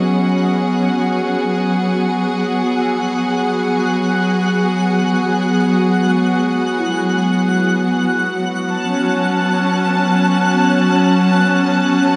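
Bathed in a wet concert-hall reverb, this luminous, warm ambient passage at 56 BPM in E major, cut from a longer piece, places a clear, smooth symphonic string section up front with sustained chords moving from Emaj9 to Bsus2 at 8.1 seconds, while a very quiet, woody kalimba rings out arpeggios and a sparkling granular texture with an octave-up shimmer joins at 0.3 seconds.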